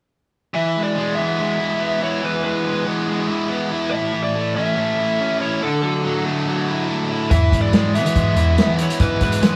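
A straight 4/4 pulse at 142 BPM drives this confident classic rock passage in E mixolydian: a dark, compressed overdriven guitar and a bright, tight distorted guitar play a picked riff from 0.5 seconds while a biting lead guitar carries the melody above through E, A and Dadd9, before a growling, amped electric bass and a muffled, lo-fi vintage drum kit with a tight kick and rolled-off top join at 7.3 seconds, the band sounding live together in a moderately reverberant stone room.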